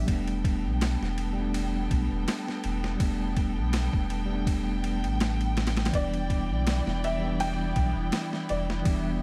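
A gritty, pitched-down boom bap kit with a thumpy kick, high-tuned snare and ride cymbal sets a lightly swung 82 BPM pulse for this brooding, hypnotic trip hop excerpt, as a round, deep dub sub bass sits up front beneath a bell-like tine electric piano carrying harmonic tremolo and tape echo, veiled con sordino strings hold dark, lush sustained chords over a Gadd9/E harmony, a felt-muted upright piano with audible action noise adds a mellow, dub-echoed melody from 5.9 s, and a very quiet reversed, granular texture drifts in at 7.5 s, in a dry mix dusted with vinyl crackle.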